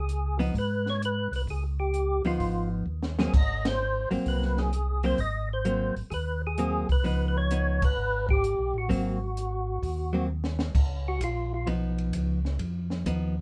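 Greasy and bluesy, this swinging soul jazz organ trio moves between Db9 and Ab9 chords in a snug small room. A fat, percussive tonewheel organ carries the melody with chorus vibrato, key click and a slow rotary speaker, while a mellow, round second organ voice holds down the bass, a dark, compressed hollow-body electric guitar comps in the middle register, and a compact cocktail kit with a high-tuned snare and punchy kick adds two short fills. Band accents punctuate the groove before an organ solo takes over at 10.7 seconds, with the melody organ dropping out at 11.7 seconds.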